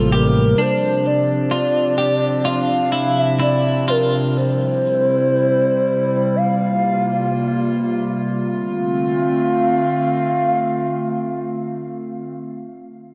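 Dark, warm production bathed in a moderate plate reverb gives this dreamy, ethereal dream pop fragment a soft, enveloping haze, and the pace gradually slows between 0.6 and 8.4 seconds. A hollow, woody clarinet-like synth lead carries the mellow melody with vibrato and chorus over a warbling, nostalgic, lo-fi tape-like pad that holds detuned chords up front. A glossy chorused synth bass sounds only in the opening half second, while a clean, picked electric guitar adds scooped arpeggios until 4.4 seconds before the harmony settles onto a closing F6 at 8.4 seconds.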